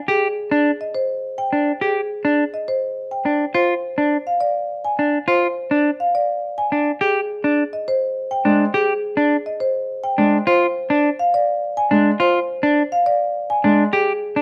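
A bright, clean semi-hollow electric guitar picks arpeggios up front throughout this short excerpt of minimalist classical pattern music, set in F dorian at 104 BPM in a straight 3/4 with a hypnotic, urgent pull. A marimba played with medium mallets carries the melody in a warm upper register, while a clear concert grand piano with deep, open bass joins the accompaniment at 8.5 seconds as the harmony moves from Abmaj7 to F minor. Close, detailed microphones and light reverb keep the sound intimate and crisp.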